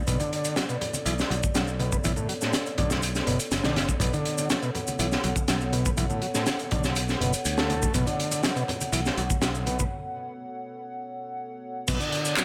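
A straight 4/4 breakbeat groove drives this funky, energetic cut from a longer piece, built on a crunchy, saturated acoustic drum kit with a punchy kick, high-tuned snare and dark cymbals sitting up front with a rolled-off top. Layered electronic shaker and handclaps, pushed through overdrive, add a gritty electronic edge, while low-tuned congas with a thick-skinned, vintage tone sit very quietly underneath until 9.8 seconds. A bright, growly picked electric bass anchors the low end, and a reedy combo organ with heavy vibrato plays a riff through a low-pass filter and tape echo. Behind them, a deep, moody analog pad holds sustained Bm9 chords with a slow attack and long release, its detuned, chorused tone roughened by 12-bit sampler grit and pumping against the beat. A break arrives at 9.9 seconds, and the whole sits in a light reverb.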